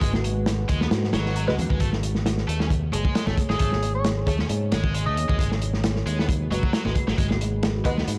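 A dry, gritty recording with transformer saturation frames this funky, raw breakbeat excerpt at 134 BPM in G# phrygian, where a crunchy, up-front breakbeat kit with a tight kick and a swing of 54% on 16ths drives a growly overdriven fingered bass, a bright double-tracked high-gain guitar riff with analog delay, very quiet congas, and a deep, moody pad pumping in the background over G#m7 and Amaj7, while muted, nasal dub chord stabs with phaser and lush chorus enter at 1.5 s and a vibrato-laden alto saxophone with a small-speaker tone plays a brief solo melody from 3.5 to 5.4 s.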